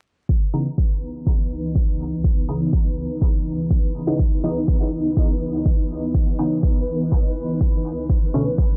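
A deep, overdriven kick thuds up front from 0.3 s in this hypnotic, hazy dub techno cut at 123 BPM in C# minor, joined by muted, nasal sawtooth chord stabs with phaser, 12-bit grit and dub echo, a bubbling, resonant stepped-filter texture with chorus and a cloudy, evolving granular sine pad, all three pumping against the kick as a filter sweep runs across the pad and the C#m9 harmony turns to Bm9 near the close, the whole mix sounding dry and gritty with transformer saturation, vinyl crackle and a dulled top end.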